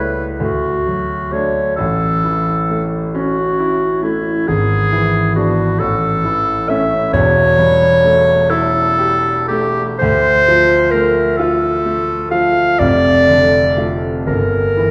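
A warm solo clarinet carries a melancholic, yearning melody up front in this romantic classical duo, cut from a longer piece and moving slowly in a rubato 6/8 at about 38-46 dotted-quarter beats per minute. Beneath it, a clear concert grand piano with deep, open bass supplies the accompaniment as the harmony drifts from D and A through E7/G# to A7/E, the music settling into D minor at 7.1 s. The recording is heard from further back in a recital hall, wrapped in a generous, wet reverb.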